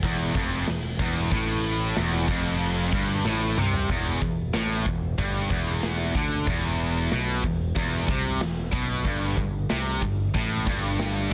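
Dark and relentless, this heavy metal excerpt at 93 BPM in 4/4 pairs two bright, picked distorted guitar riffs with a double-tracked overdriven guitar in the background that drops out at 3.9 s, when the music settles into E minor after a drum fill, all driven by a punchy overdriven picked bass and an up-front acoustic drum kit with a punchy kick, medium-tuned snare, toms, hi-hat and bright crash cymbals, captured dry in a dense, heavily limited modern master that moves from Em to G5 at 9.1 s.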